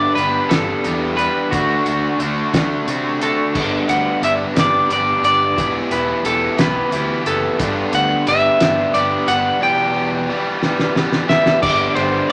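Set in a slow, swaying 6/8 at 59 beats per minute, this short indie rock excerpt in G major feels carefree yet wistful. A bright, clean electric guitar carries the melody over an overdriven, double-tracked semi-hollow guitar that sits up front with a picked, hollow-bodied riff. Beneath them, a fingered electric bass adds a growly fuzz low end, and a cloth-damped drum kit with a thuddy, muffled character, fat snare, tight kick and dark cymbals comes in at 0.2 seconds. The harmony opens on Gadd9 and D before rocking between G and Em, with a drum fill from 10.6 seconds leading back to G. A generous large-studio reverb surrounds the parts, while the kit keeps a gritty, lo-fi, rolled-off top that contrasts with the bright guitars.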